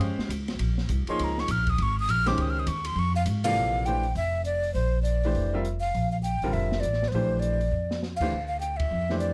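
A breathy, hollow flute with vibrato and a chiffy attack opens this brisk, open and hypnotic modal jazz excerpt at 202 BPM in swung 4/4, soloing in plate reverb over a clear, intimate baby grand piano with audible action noise, a woody, growly upright bass up front, and a dark, smooth drum kit of ride, hi-hat, snare, boomy kick and crash. After a Bbm chord, the harmony settles at 3.6 seconds on Bb69 in Bb lydian. A drum fill arrives at 7.7 seconds and a band accent at 8.8, heard through close, detailed microphones with light reverb.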